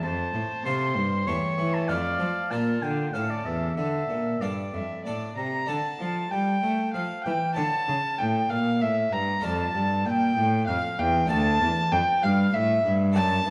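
A grave, introspective baroque-style sonata fragment in triple metre opens with a gut-strung violin carrying the melody up front over a rich, bowed cello bass, while a distant oboe with light vibrato sings a second line and a brilliant, full Italian-style harpsichord supplies the continuo, all four sounding together throughout in a dark, warm recital-hall reverb.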